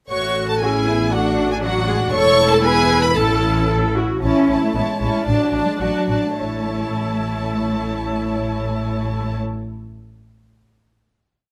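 Close, detailed microphones catch the string orchestra in a moderate recital hall, giving this short, complete classical-period movement a clear yet resonant sound. It is a spirited, cheerful piece in A major and 2/4, moving at a quick 102-120 BPM with a rubato feel that slows from 3.7 s into a coda and a long final chord. A lush violin section carries the bowed melody high up with expressive vibrato, repeated notes and sustained chords, while a second violin section, soft-edged and intimate in sul tasto, doubles the tune at the octave. The violas sit further back, smooth and even, weaving independent inner lines and a counter-melody, and a velvety cello section enters at 0.6 s with portamento, answering at phrase ends and taking up the melody. Underneath, an up-front double bass section holds a full, sustained bass with repeated notes, anchoring the harmony as it settles onto A at 6.4 s.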